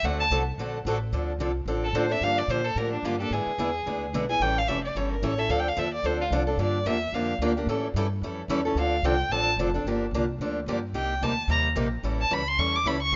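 Acoustic string swing in the jazz manouche style, bittersweet and swinging at a brisk 220 BPM in D minor shifting to G minor at 9.9 s, with an up-front bowed violin soloing throughout in a warm, expressive voice full of vibrato and portamento, a bright, up-front picked archtop guitar comping with audible finger squeak, and a woody, thumpy pizzicato upright bass underneath, all in a rough home-demo mix with light small-room reverb and a dull, rolled-off top end.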